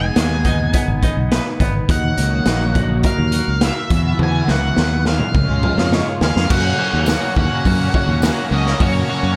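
Indie rock with a carefree, wistful mood, this short excerpt pairs a dark, fuzzy octave-fuzz lead melody with a bright, overdriven crunch riff and a twangy, clean twelve-string riff sitting in the background, all three guitars washed in dub echo. A fingered electric bass sits up front, while a gritty, saturated garage drum kit with a punchy kick and dark cymbals pumps in a small room, and a drum fill runs from 4.2 to 6.5 seconds. The chords move from G#m through D#madd9, Esus2 and C# before landing on F#, where a jingly tambourine briefly joins at 7.1 seconds in an echo-heavy mix.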